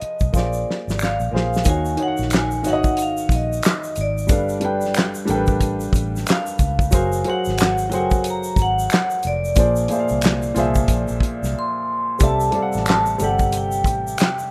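A ringing, metallic vibraphone melody with slapback echo and slow motor vibrato floats over woody upright piano chords full of audible action noise, a dark, foam-muted electric bass, and an up-front soul drum kit with a fat snare, tight kick, hi-hat and handclaps, while a distant egg shaker and finger snaps add texture, giving this introspective, late-night neo-soul excerpt a swung groove and a rough home-demo intimacy, from an opening drum fill to a brief drum dropout at 11.5 seconds.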